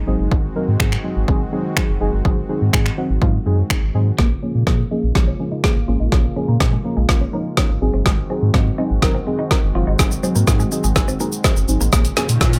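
A punchy deep house drum kit sits up front in this energetic, driving dance-pop excerpt at 124 BPM in Bb minor, its woody snare, dark hats, finger snaps and shaker riding over a deep sine-and-triangle sub bass, while a soft, phased chord stab and a smooth, detuned analog pad pump with the sidechain through Ab7 and Bbm7 chords. At 4.2 seconds a bright, twangy twelve-string electric guitar riff enters in the background with lush chorus, as a build-up, drum fill and filter sweep carry the music forward. A riser joins at 12.1 seconds, all in a dry sound with little reverb.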